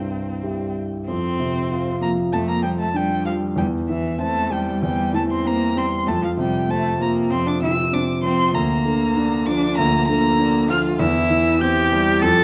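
Heard through vinyl crackle and a moderate recital-hall reverb, this brief cut from a longer work is a quick, graceful and cheerful classical-period movement for piano trio in F major at 97 BPM, played with rubato in 4/4. Up front, a dark, woody violin carries the melody with vibrato, while a rich, expressive cello sings a second line with vibrato and portamento. An open, warm concert grand with deep bass supplies the accompaniment, and all three play throughout the 12.4 seconds.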